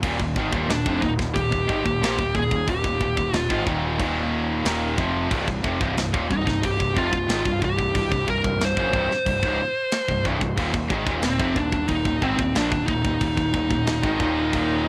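A steady 4/4 pulse at 91 BPM drives this dark, relentless heavy metal excerpt, with a tight drum kit of bright cymbals, medium-tuned snare and crash underpinning punchy, fuzz-laden picked bass. Two background rhythm guitars, one overdriven and one scooped and double-tracked, join a very quiet high-gain guitar in low riffs over chords moving from Eb5 to Cm and back. From 0.7 seconds a dark, high-gain lead guitar sits up front with the melody, and the whole has the light reverb and tape grain of a home cassette recording.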